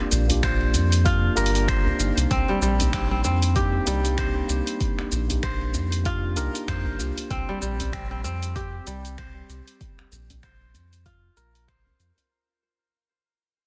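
A round, dark analog bass pumps beneath bright, crisp fingerpicked kora arpeggios and a mellow tine electric piano that drops out at 7.6 s in this hypnotic, warm organic downtempo piece in C minor at 96 BPM with a 16th-note swing, where a meditative bronze singing bowl rings faintly at the opening and a deep electronic kick, tape-warm deep house kit of finger snaps, hi-hat and shaker, and a very quiet djembe with metal rattles carry the groove from Cm7 to Bbsus2 through a fade-out beginning at 2.3 s in a dense, heavily limited mix with light reverb.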